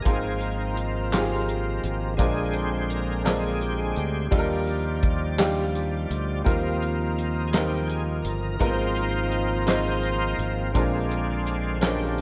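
A slow 6/8 lilt carries this uplifting, reverent gospel excerpt, where a shouting, lightly overdriven tonewheel organ with key click and slow rotary swirl takes the lead over a clear, worn grand piano with slapback echo, a punchy, up-front fingered electric bass, a dry soul drum kit with punchy kick and medium-tuned snare, and crisp, vintage group handclaps that join in the background at 1.1 seconds, all set in concert-hall reverb for a big arena sound.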